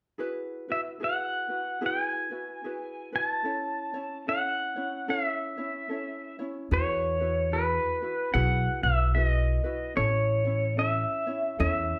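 Hawaiian music at a relaxed 74 BPM in 4/4 with a gentle swing on the eighth notes, this languid, sunny passage in E major is cut from a longer piece. A bright, light ukulele opens at 0.2 seconds, thumb-plucked and sitting softly in the background, moving between Eadd9 and A chords. At 0.7 seconds a clean electric pedal steel guitar takes the melody up front, its compressed tone played with fingerpicks and slide and shaped with volume swells. At 6.7 seconds a pizzicato upright bass with gut strings joins, woody and thumpy, sounding low and close alongside the steel. The trio plays live in one room, and a moderate large-studio reverb lends the sound a soft, open glow.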